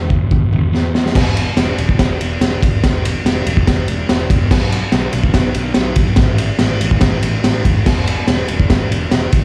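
Raw and swaggering, this short garage rock cut comes from a live club gig heard through the venue's PA, in straight 4/4 with only a little room reverb. A fuzzed, overdriven picked electric bass with tube saturation growls low from the start, joined almost at once by an up-front, gritty breakbeat drum kit with a tight kick, high-tuned snare, dark cymbals and a rolled-off top, crunching across crash, ride and toms. A drum fill from 0.7 to 1.2 seconds kicks the band into the main section, which drives on to the cut at 9.4 seconds.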